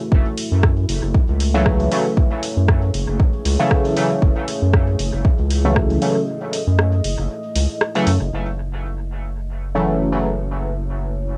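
A resonant, juicy sawtooth polysynth carries chorused, phased stabs with dub echo and a filter sweep from 1.5 s, riding a hypnotic, meditative 117 BPM dub techno groove in F# dorian over a sustained F#m7, where a round, mellow analog bass and a deep, dark ambient pad pump against an overdriven kick and a dry analog drum machine's hi-hat and rim click, all under light reverb with a cassette home-recording character, before a break at 6.3 s and a band accent at 7.8 s lead into the final section at 8.3 s of this excerpt.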